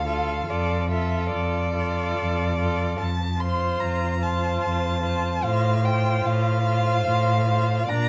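Elegiac and melancholic, this short excerpt from a slow romantic movement for string quartet moves at 74 BPM in 3/4, with a rubato feel that lets the phrases breathe. A single bowed violin carries the melody with a soft attack, vibrato and expressive portamento, its tone warm. Beneath it, the second violin holds a focused, distant line, while the viola supplies a smooth, even accompaniment from further back. The cello anchors the bass up front, its sound rich with a smooth top, and it sits noticeably louder than the other parts. All four players sound together throughout the 8.1 seconds, the harmony settling on Dm/F before moving to F/A at 5.4 seconds, all wrapped in light reverb and a dark production.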